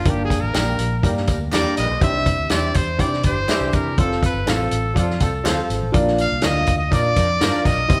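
Drenched in a large studio reverb, this joyful, uplifting slice of uptempo 1960s-style soul sounds like a band playing live in one room, with a bright, vibrato-laden jazz trumpet soloing up front over a Gm, Cadd9, F and Bb progression. Behind it, a horn section adds a jazz-style second line. A dark, round, foam-muted fingered bass and a clear, woody upright piano fill out the harmony, while a tight, mid-forward soul drum kit with a rolled-off top drives the straight 4/4 groove alongside a very quiet, close, dry tube shaker and group handclaps. In the background, a slightly broken-up, lo-fi electric guitar through a small old amp plays warm stabs from 0.5 to 7.5 seconds.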